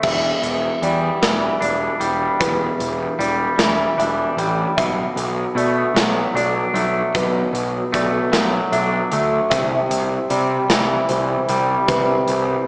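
Cinematic and melancholic, this post-rock piece unfolds at a slow 51 BPM in a straight 6/8, rooted in E minor as it moves from Em7 to Bm7 at 4.8 seconds and on to Cmaj7 at 9.5 seconds. A twangy electric guitar sits up front with clean, compressed, fingered arpeggios spanning E2 to D4, bathed in spring reverb. Beneath it, a fuzz-laden picked electric bass growls with a punchy, overdriven bite. A big acoustic rock drum kit fills out the sound with bright cymbals, a medium-tuned snare, a tight kick and crash and hi-hat accents. Further back, a felt-muted upright piano traces soft, dark arpeggios between B4 and E5, its audible action noise lending an intimate texture. The whole passage is drenched in a lush concert-hall reverb, yet it comes through with the boxy character of a small speaker, in a 12.7-second fragment cut from a longer piece.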